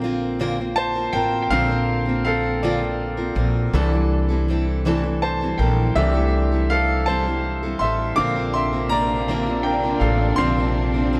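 Melancholic and aching, this slow pop passage in 6/8 is led by a clear, open baby grand piano playing solo with long sustain, up front in the mix. A full-bodied steel-string acoustic guitar picks arpeggios through tape echo, with audible finger squeak, while a woody, thumpy pizzicato upright bass sits low beneath the Bbadd9 and C6 harmony. At 8.2 seconds a lush, bowed studio string section enters with smooth vibrato chords, all set in a light small-room reverb.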